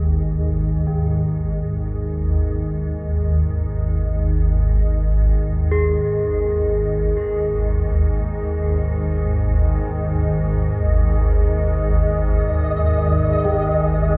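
In free time, this desolate, unsettling dark ambient drone unfolds across a 14.2-second excerpt cut from a longer piece. A swarming drone sits up front from the start, built from detuned unison sine and sawtooth layers whose granular, tense sound evolves through slow attacks and long releases, bathed in its own reverb. Over it, a gamelan-type bronze metallophone plays ringing arpeggios with a horn mallet, its dark, smooth tone set lower in the mix and trailed by analog delay. At 12.4 seconds a flickering, grainy texture of detuned triangle waves emerges high above, carrying its own reverb and a subtle chorus. The whole mix is dreamy and soaked in a lush hall reverb, with the top end rolled off to leave a hazy, muffled sheen.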